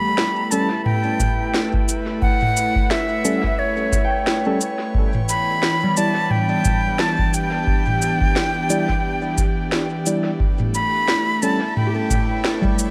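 A breathy, reedy silver flute sits up front with vibrato and dub echo, carrying the melody over an airy, slowly swelling pad with chorus and a clean tine electric piano dropping echoed stabs from 0.5 seconds. This deep, meditative ambient dub fragment moves at 88 BPM with a swung sixteenth feel, anchored by a tape-warm analog kick from 1.2 seconds and an electronic kit of shaker, woody snare and toms re-recorded in a small room. A mellow, thumb-plucked harp rings in the background with arpeggios from 4.0 seconds, all inside a moderate spring reverb as the chords move from A7 to Em7 and back.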